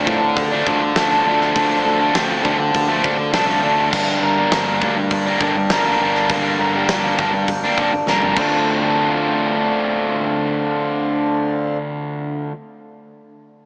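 Post-rock at 101 BPM in D minor, melancholic and cinematic, where a bright, double-tracked distorted guitar riff sits up front over arpeggios from a slightly broken-up, lo-fi guitar through a small old amp with analog delay, a round fingered bass, a reedy harmonium breathing sustained chords in the background, and a huge arena drum kit with a fat snare and punchy kick that fills from 8.1 to 8.7 seconds and stops at 8.5 seconds, all moving from Dm7 to Gm7 and back inside a huge ambient reverb with a small-speaker sound.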